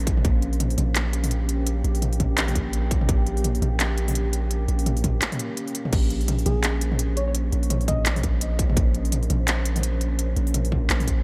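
Half-time drum and bass with a heavy, cinematic mood, built on a deep, detuned sawtooth pad with chorus and pumping sidechain that holds a dark Bbmadd9 chord above a mellow, up-front 808-style sine bass. An industrial drum kit of crisp hats, handclaps, toms and crash cymbal sits up front with a tape-warm, small-room character, joined by a distorted electronic kick from 0.1 s, with a short break at 5.2 s. At 6.5 s a soft, round FM lead with vibrato and analog delay plays a brief, keys-like melody in the background until 8.2 s.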